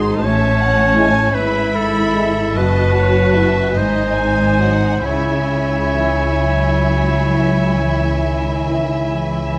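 A rubato 12/8 lilt carries this yearning, solemn classical fragment, where a lush violin section sings the melody with expressive vibrato over a clear, close-miked solo clarinet and a distant, rich second violin section on a second line, a bowed viola section fills the accompaniment, focused cello and up-front double bass sections anchor the low end, and a mellow, roomy French horn section holds sustained background chords from 0.9 s to 8.8 s, the whole set in a moderate scoring-stage reverb with a dark, warm production.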